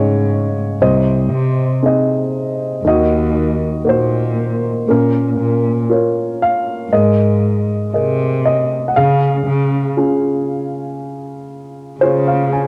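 Reflective and intimate, this short passage from a longer acoustic folk-pop ballad moves at an unhurried, straight pulse in 4/4. A woody upright piano carries the melody up front, its tone warm and close. Beneath it, a single bowed cello supplies the bass line, dark and expressive, with vibrato, portamento and a smooth top end. Both instruments play throughout, and the piano adds a fill from 11.5 to 12.7 seconds. Light reverb and small room ambience give the home cassette recording a cozy, personal feel.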